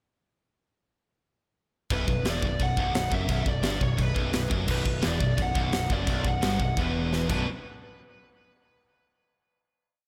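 A tight metal drum kit sits up front with bright cymbals, a high-tuned snare and a tight kick driving a metal groove at 173 BPM, while a growling picked electric bass pumps eighth notes that double the guitar riff over a single B minor chord. Heavy high-gain and sludgy distorted guitars grind out single-note riffs from 1.9 seconds, a cranked lead guitar with slapback echo states a motif-based melody, and a biting double-tracked guitar joins in the background at 4.7 seconds. This dark, relentless heavy metal piece closes with a drum fill into a final hit at 7.5 seconds.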